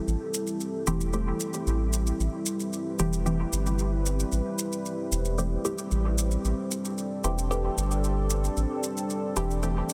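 A huge ambient reverb and a dense, heavily limited master wrap this meditative, nocturnal dub techno fragment in A minor, moving at 113 BPM in a straight 4/4 over a single Am7 chord. A dark, full-bodied analog pad with a slow attack and chorus sustains up front beside a round, deep analog bass, while close, dry maracas add a grainy, mellow texture. From 0.9 seconds, a muted, detuned dub chord stab with a filter pluck decays through phaser and dub echo.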